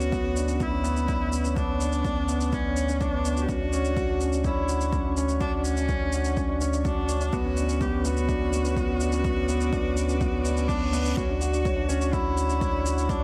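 A light reverb and digital ambience frame this hopeful, luminous piano and strings electronica excerpt at 125 BPM, where a dark, woody upright piano riff under a filter sweep and a close, biting solo viola melody ride over a very quiet detuned sawtooth pad, a round sine sub bass with sidechain pumping, a shaker, a punchy overdriven electronic kick drum entering at 0.1 seconds, and a reverse cymbal in the background at 10.4 seconds, all moving between Bmadd9/D and Dmaj7.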